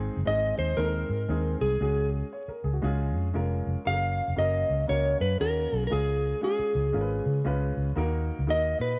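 A swung 4/4 groove at 117 BPM drives this joyful, danceable slice of uptempo 1960s-style soul, tuned slightly sharp to A4 = 444 Hz and moving through G#, C#sus4, C#, F#, C# and D#m. A round, punchy, foam-muted electric bass sits up front beside a clean, dark electric guitar that carries the melody from 0.3 seconds, while a natural-sounding baby grand piano with tube saturation fills in the accompaniment further back. Light reverb and vinyl crackle lend a vintage patina to this short passage cut from a longer piece.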